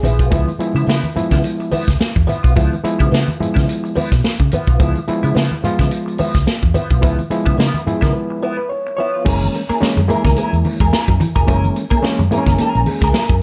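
An overdriven reed electric piano punctuates this strutting funk excerpt, its barky, gritty stabs pushed up front through a combo amp and trailed by tape echo, with fills near the start, ahead of the break at 8.1 seconds, and at the close. Underneath, a vintage muted fingered electric bass gives a dark, round, punchy bottom, while a swinging big-band drum kit sits forward in a natural studio room with a hard-hitting kick, medium-tuned snare, hi-hat and crash cymbal. The groove moves at 108 BPM in 4/4 with a gentle swing on the sixteenths, over harmony that opens on Db7#9 and shifts to Gb9 at 9.3 seconds. A clean, twangy, compressed electric guitar adds accompaniment through wah and spring reverb, and very quiet, low-tuned congas with a thick skin sit close beneath. At 9.3 seconds a subdued, mellow second electric guitar enters in the background with a riff coloured by ensemble chorus. Light reverb and a softened top end round out the sound of this funky cut from a longer piece.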